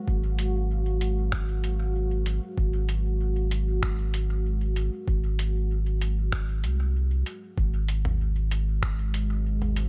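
A straight 4/4 pulse from a muffled, thumpy, pitched-down electronic kick anchors this spacious, peaceful slice of ambient dub, joined at 0.4 seconds by a compressed, tape-warm, lo-fi sampler-style kit of finger snaps, hi-hat and toms, set in small-room ambience with dub echo. Beneath, a round, mellow sine sub bass sits up front, while a dark, moody, detuned sawtooth pad holds a sustained Ab13 chord with a slow attack, long release, chorus and built-in reverb. The kick stops at 9.0 seconds, and the passage is cut from a longer piece.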